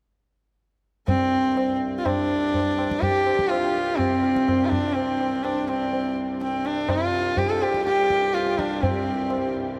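Hindustani classical music in a serene, meditative mood, this short excerpt cut from a longer piece sets a single bowed sarangi up front, its earthy, gliding melody carried by portamento and sympathetic strings. Beneath it a reedy, breathing harmonium holds a low drone while close, low-tuned tabla with a short ring keep a straight 4/4 pulse, all three entering at 1.1 seconds. A huge ambient reverb soaks the mix in a dreamy haze.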